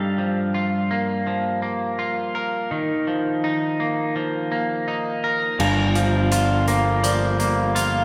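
Post-rock in G minor at 83 BPM, brooding and melancholic, this short cut opens with a slightly broken-up, twangy electric guitar arpeggiating up front over clean, compressed pedal steel chords played with fingerpicks and slide, its volume swells hovering over Gm7 and Ebsus2. At 5.6 s a round, punchy fuzz bass lands on a low G, a bright second guitar through a small old amp picks arpeggios in the background, and a big rock drum kit adds crash cymbal and hi-hat as Gm7 returns. A wet church reverb gives the recording a cavernous, hall-like space.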